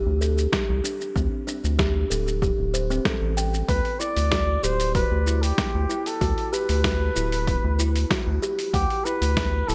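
A veiled, bucket-muted trumpet with vibrato, scooped notes and digital delay enters at 3.7 s over an earthy organic downtempo groove, where a round, deep analog bass sits up front beneath woody kalimba arpeggios with delay, a gritty, compressed sampler-style kit of hi-hat, shaker and snare, and a punchy, overdriven electronic kick, set in plate reverb with bright 1980s-style digital production.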